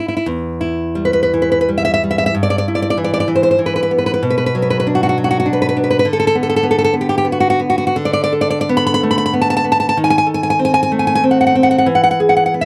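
Dry and close, with the feel of a 1970s studio, this short cut from a longer romantic piece for solo classical guitar sounds intimate and wistful. A bright, fingerpicked nylon-string guitar sits up front, moving freely in a rubato 3/4 and ranging from E2 up to B5. The harmony drifts from Em through Bm and Bm7/D to a D#dim7 at 10.0 seconds before settling on E at 11.9 seconds.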